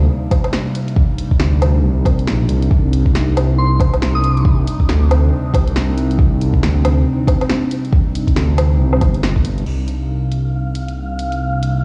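A warbling, nostalgic pad on a Cm7 chord and a deep, rumbling detuned saw bass open this ghostly, wistful future garage excerpt at 138 BPM, both pumping against the sidechain, with chorus and phaser on the pad and tube saturation on the up-front bass. A gritty 12-bit deep house kit with a punchy snare, hi-hat, woodblock and crash joins alongside a deep electronic kick, and a soft, pure FM bell with analog delay appears briefly at 3.6 seconds in a swung, lo-fi groove. The kick drops out at 9.4 seconds as a filter sweep moves across the pad, and an airy, breathy wind-like noise texture with reverb enters at 10.3 seconds.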